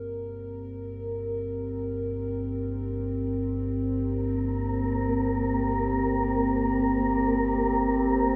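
A detuned, chorused analog pad on sustained G minor chords fades in over a rumbling low drone in free time, and at 4.4 s a breathy, wind-like tuned noise texture joins up front, all bathed in cavernous cathedral reverb that gives this brief, ominous dark ambient excerpt its vast, shadowy depth.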